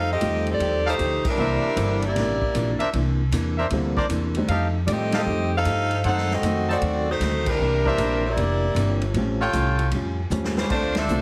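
Big band swing in C mixolydian at 154 BPM, this joyful excerpt cut from a longer piece puts a clear, up-front saxophone section with vibrato on the melody over a woody pizzicato upright bass, a dark hollow-body jazz guitar and a warm, long-sustaining baby grand piano in the background, while a roomy, distant drum kit with dark cymbals and a boomy kick swings along, a smooth-topped trumpet section adds stabs from 0.9 seconds, the harmony moves from F9 through F#dim7 and A7alt to Dm7 with band accents along the way, and a short drum fill arrives at 10.3 seconds, all within a moderate studio reverb and a heavily compressed radio sound.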